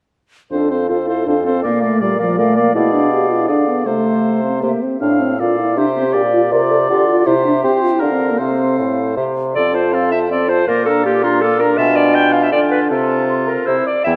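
A mellow, up-front bassoon anchors the bass of this spirited, quick classical-period movement for wind quintet in F major at 160 BPM in 3/4, while a hollow, background silver flute with vibrato carries the melody above a warm oboe second line and accompaniment from a clear, distant clarinet and a smooth-topped French horn, all set in a dark, wet concert hall.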